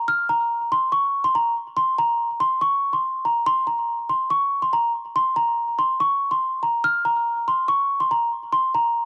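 In a half-time 4/4 hip hop feel, a lone celesta plays high, bell-like, delicate lines through tape echo, close-miked and up front, while the gritty cassette recording and studio reverb give this 9.1-second cut from a longer piece a cold, menacing mood.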